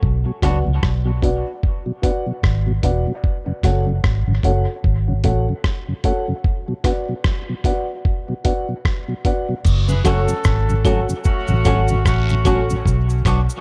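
Deep and hypnotic, this dub reggae passage, cut from a longer piece, moves in a swung 4/4 over a slow cycle of B minor and F# minor chords. The opening stretch is a break, anchored up front by a round, foam-muted fingered electric bass and a gritty, compressed sampler-style drum kit with a thumpy kick, hi-hat, rim click and crash cymbal. A mellow tonewheel organ with chorus vibrato and a slow rotary speaker fills the middle, while a woody, boxy upright piano, with audible action noise and long sustain, adds stabs soaked in dub echo. At 9.7 seconds the second section brings in close, dry cabasa and guiro, joined at 9.9 seconds by a distant, punchy horn section with light vibrato playing a second line. A clean, twangy picked electric guitar sends its echoing phrases through the closing seconds from 10.1, all within a dark, dry production that keeps the top end dull and subdued.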